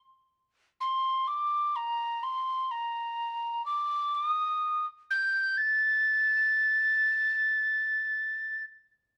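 Haunting and full of longing, this short fragment of Celtic folk drifts in free time, unbound by any steady pulse. A lone tin whistle carries everything, entering at 0.8 seconds and falling silent at 8.6 seconds, its line sitting high between Bb5 and A6. The tone is hollow and airy, held straight, and each note opens with a crisp attack and a breathy chiff. Light reverb surrounds the whistle, which was recorded live in a single room and sounds distant yet sits up front in the mix. Cut from a longer piece, it feels like a brief, lonely moment.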